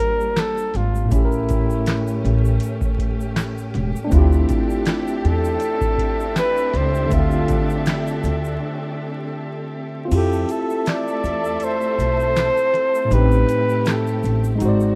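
A lightly swung 80 BPM groove from a booming analog drum machine, with deep kick, crisp snare, handclaps, metallic hats and crash, anchors this nostalgic, melancholic lo-fi hip hop piece in D minor, where a breathy, whispered flugelhorn carries an intimate jazz melody up front over a clean tine electric piano with cassette tape character, distant bowed strings holding sustained chords, a woody pizzicato upright bass entering at 0.7 seconds and a grainy egg shaker in the background, set in a rough home demo mix with light reverb and vinyl crackle, before a break at 8.6 seconds leads into a new section at 10.1 seconds where the kick falls silent.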